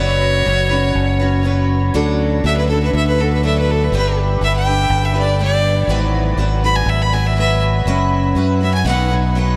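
Folk rock with a heartland rock lean, this nostalgic, jangly piece opens on a rich, biting bowed fiddle up front carrying the melody with light vibrato and tape echo until 9.1 seconds, over bright picked steel-string acoustic guitar with lush chorus and a direct fingered electric bass, all in a straight 4/4 and soaked in a huge, dreamy ambient reverb.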